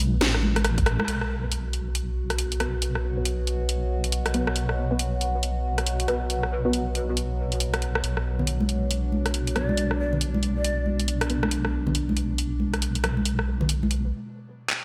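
A half-time deep dubstep groove at 138 BPM swings its sixteenths under a garage drum kit of cracking snare, bright hats, handclaps and rim clicks, with a tight electronic kick landing once at 0.8 seconds and small-room congas flickering in at the start and again from 8.4 seconds. A deep, detuned sawtooth wobble bass sits up front in B minor, tube-saturated and chorused, while a resonant drone with moving overtones and muted, phased dub chord stabs soaked in tape-worn echo build a brooding, meditative haze. At 9.6 seconds a distant, breathy shakuhachi lingers on one mellow note with vibrato, and a break arrives at 14.1 seconds.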